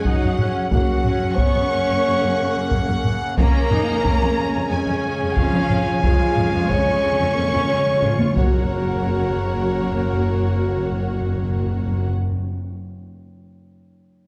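A straight 4/4 pulse at 90 BPM drives this heroic, triumphant cinematic orchestral cue in F# major, cut from a longer piece, with distant taiko drums pounding under heavy sticks until 9.7 seconds and close timpani entering with a fill at 3.4 seconds, while mellow French horns and background trombones hold sustained chords, bright trumpets punch out stabs, lush vibrato violin sections carry the melody and a smooth second line over an intense viola accompaniment, and soft-attack cellos and double basses anchor the low end, all set in a moderate scoring-stage reverb with a dark, warm production.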